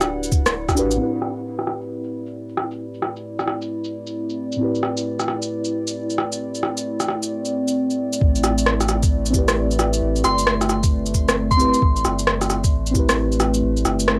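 Muted, felt-like synth keys accompany this melancholic, nocturnal future garage excerpt, their dark, intimate tone roughened by vintage 12-bit sampler grit, chorus, tape echo and sidechain pumping. Alongside them, a warbly, detuned tape-like pad holds mellow sustained chords that move from Em9 to Am9, with chorus and built-in reverb adding a nostalgic haze. An up-front, swung bed of electronic rim click, shaker and cabasa runs throughout, low-pass filtered and re-recorded in a small room, with a filter sweep on the drums through the middle stretch. A round sine sub bass and a muffled, thumpy, pitched-down kick appear briefly at the start and return together at 8.2 s. A soft FM bell sounds a single high note from 10.2 s, gentle and pure under chorus, phaser and tape echo. The piece has the murky character of a home cassette recording in a modest studio reverb.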